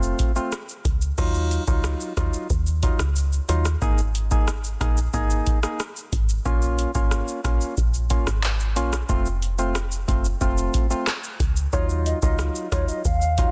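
Dancehall with a tough, bouncy straight feel, built on an up-front, booming analog drum machine of deep kick, metallic hi-hat, handclaps, rim click, shaker and crash, with soft clipping on the snare, under a round, woody FM bass and mellow, chorused organ stabs. The harmony moves through F, Ebmadd9, Absus2 and Bbm before returning to F and Ebmadd9. At 11.7 s a dark, hollow clarinet-like synth lead with vibrato, chorus and delay takes the melody, all set in a dry, dense and heavily limited mix of this short excerpt cut from a longer piece.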